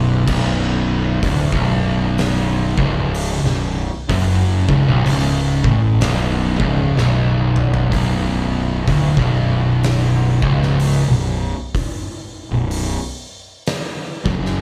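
Heavy and brooding, this stoner and doom metal passage, cut from a longer piece, crawls along with a loping swing in 4/4 and sounds like a live gig heard through a club PA in a small room. A dark, distorted fuzz guitar carries the riff, double-tracked and up front, starting on a B5 power chord. Beneath it, a fingered electric bass adds a round, overdriven fuzz tone, also up front. An oversized, low-tuned acoustic drum kit enters at 0.3 seconds with a fat snare, punchy kick, toms, hi-hat and crash, its sound saturated and gritty in a bright stone room that pumps. A drum fill at 7.0 seconds leads into a second section at 7.9 seconds, where the harmony drops away from chords while guitar and bass keep grinding through to the end.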